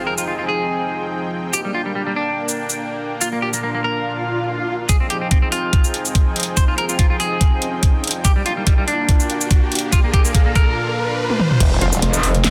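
A half-time 4/4 groove at 143 BPM with a slight swing on the sixteenths drives this chaotic, aggressive heavy wobble dubstep excerpt in F dorian. A clean, bright semi-hollow guitar carries the melody up front from the start, coloured by subtle chorus and tape echo, over a lush, airy supersaw pad that pumps against the sidechain through chords of Fm7, Gm and Bb. The dubstep kit enters at 0.2 seconds with a huge snare, metallic hats, shaker, crash and toms, and a swell at 4.2 seconds leads into a build-up where a knocking electronic kick joins, a riser climbs beneath, and drum fills push toward a short break. At 11.6 seconds an impact lands with a chorused, overdriven formant-sweep wobble bass on F, a very quiet orchestra-hit-like stab, and then a saturated, metallic FM wobble bass. The mix is dense and heavily limited, with light reverb.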